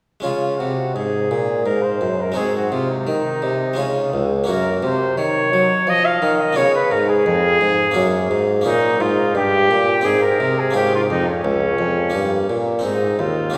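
At 0.2 s a mellow, punchy trumpet, a bassoon and a harpsichord begin together in a radiant, serene baroque-style sonata movement with continuo, moving in an unhurried 3/4 at 86 BPM. The trumpet carries the melody in a classical style, sitting up front yet sounding distant and roomy, reaching from Db4 up to F5. Beneath it the warm bassoon holds the bass line with a light vibrato, equally prominent in the balance, while the harpsichord sits further back, its plucked, bright single set of strings in a Flemish style filling in the accompaniment. The harmony settles in Db major before turning toward Ab major at 8.6 s, closing on an Ab chord at 12.8 s. A generous concert hall reverb places the ensemble toward the back of the room, and the passage, cut from a longer piece, stops at 13.6 s.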